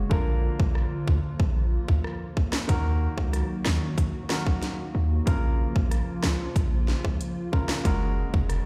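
Bouncy and tough, this short dancehall cut at 93 BPM pairs a hard-hitting, punchy 808-style bass with a sine body and noise layer, an up-front electronic drum kit with a tight kick, sharp snare and hats that have a re-recorded big-room character, a clear, polished baby grand piano, and a hollow, flute-like pad that warbles with ensemble chorus and sidechain pumping, all over a break in the first 2.7 seconds and chords moving from Bb through Ebm and Bbm to Gbadd9, heard as if played on a big sound system in a bare stone room.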